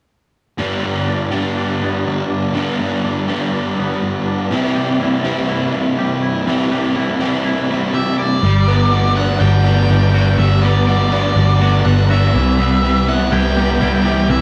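An up-front, overdriven semi-hollow guitar drives the riff in this wistful, blissful rock excerpt from 0.6 seconds, alongside a dark, thick fuzz guitar, while from 1.1 seconds a clean, twangy electric guitar plays fingered arpeggios in the background. An octave-fuzz lead guitar adds a distorted melody at 7.9 seconds, and a round, foam-muted vintage picked bass arrives up front at 8.4 seconds as the chords move from G and C to Gmaj7 and Cmaj7. The band sits in a wet small room with a rough rehearsal-room sound.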